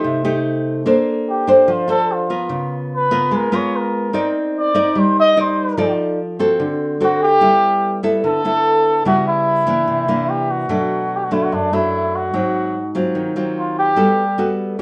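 A cup-muted trumpet sings a veiled, mellow melody with jazz vibrato over fingerpicked nylon-string guitar from the start, in a sunny, sophisticated bossa nova at 147 BPM in Bb major. The trumpet sounds soft and a touch distant yet stays up front, while the classical-style guitar is up front, warm and acoustic, its finger squeaks audible in a moderate studio reverb that suggests a band playing live in one room. At 7.4 seconds the music shifts to G major over rich extended jazz chords, and the short excerpt ends at 14.8 seconds, cut from a longer piece.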